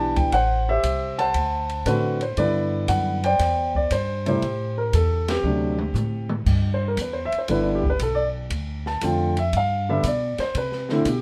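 A relaxed, swinging jazz piano trio in G major at 118 BPM opens with an up-front, deep-toned concert grand carrying the melody over a woody pizzicato upright bass, joined almost at once by a dark, boomy drum kit with a small-room feel, as the band hits an accent at 5.2 seconds, the drums fill from 5.4 seconds, and the piano takes a solo from 6.5 seconds over changes moving from Am7 and D7 to G6 and on to Dm7 and Csus2, all in light reverb.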